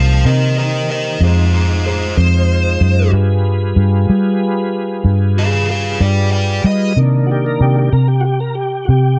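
Soulful and smoky, this slow blues in C minor at 63 BPM in 12/8 sets a dark, overdriven lead guitar melody over smooth tonewheel organ chords turning on a slow rotary speaker with chorus vibrato and a round, punchy, foam-muted electric bass up front, moving through Cm7, Fm7 and G7b9 before the guitar stops at 7.0 seconds and the organ takes a brief solo back on Cm7, all in light reverb and cut from a longer piece.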